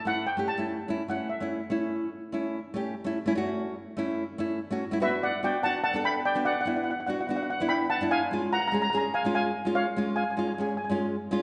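A straight 4/4 calypso pulse drives this dramatic fragment from a longer piece. A shimmering, mellow lead steel pan played with soft rubber sticks carries the melody up front, opening the passage, falling away after 1.5 seconds and returning at 5.0 seconds, while a fingerpicked classical nylon-string guitar supplies close, acoustic accompaniment through chords moving from A to Bm to C#. A wet concert-hall reverb gives the sound a spacious sheen.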